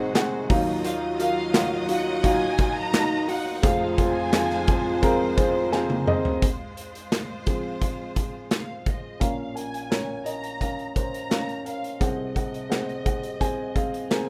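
A rough home-demo mix with light reverb carries this earnest, dramatic piano-driven pop excerpt: a woody, up-front upright piano accompanies throughout and takes a solo from 6.4 seconds, while distant, lush violins carry the melody with portamento over focused strings holding chords until 9.2 seconds, a roomy French horn section and a very quiet, twangy direct electric guitar riff drop out after the opening, and a loose small-room drum kit with handclaps and a tight kick plays a fill just before the solo.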